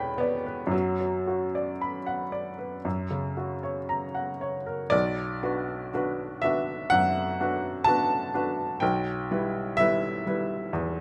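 A clear, woody upright piano plays alone in this yearning, melancholic romantic nocturne, drifting in a free rubato from the opening Em7 through to a B minor chord at 4.9 seconds, its short-sustaining, intimate tone set up front with audible action noise and close, detailed miking inside a moderate, large studio reverb, in a fragment cut from a longer piece.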